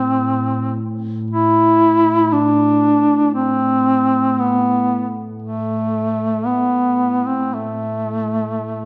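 The recording sits in a moderate recital-hall reverb with a softened top end, giving this short fragment of a longer Caucasian lament a dim, enclosed glow. A mellow duduk carries the melody up front as a solo voice, moving between A3 and E4 with a gentle vibrato, soft attacks and scooped notes in a plainly folk style. Beneath it, a warbling, tape-like pad holds a low A2 drone throughout, its detuned sawtooth and triangle tones blurred by chorus and its own reverb into a nostalgic, lo-fi haze. The pad's slow attack and sustained tone keep it far back behind the reed, so the duduk's smooth, rounded top stays the focus. The mood is solemn and longing, and both parts play from the first moment to the close at 8.9 seconds.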